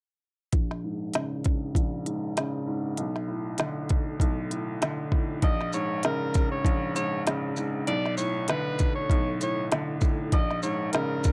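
A swung 98 BPM boom-bap groove in 4/4 opens this gritty, reflective hip-hop excerpt at 0.5 seconds, with an up-front electronic drum kit of soft kick, woody snare, crisp hi-hats and shaker. A vintage-toned upright piano with long sustain plays low chords moving between Bbm7 and Bm7, shaped by a filter sweep until 5.4 seconds, when a bright, breathy tenor saxophone enters with a vibrato-laden jazz solo. The dry cassette-tape recording gives the cut a close, hardware-rough character.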